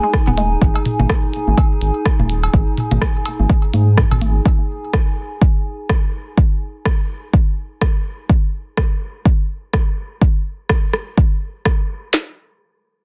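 Minimal techno at 125 BPM with a 16th-note swing, this quirky, clinical excerpt pairs an up-front, overdriven click kit of deep kick, tiny snare and handclaps with clicky, overdriven hi-hats and rim clicks, all running to about 12 seconds. A round, dark analog bass pumps under sidechain alongside tape-warm electronic toms, congas and cowbell with delay until roughly 4.4 seconds. Meanwhile a warbling, lo-fi, detuned pad with chorus and its own reverb drifts nostalgically in a fade-out that ends at 8.3 seconds, all inside a dry, dense, heavily limited master.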